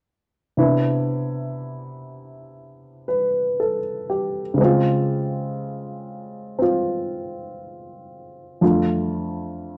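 Warm and gently swinging, this short solo jazz excerpt features a dark baby grand piano playing from 0.6 to 9.8 seconds, its mellow, intimate tone sitting up front with audible action noise and a short sustain. The chords move from Cmaj9 to Dbmaj7 and settle on F6, all heard through light reverb and the worn, warbling pitch drift of old cassette tape.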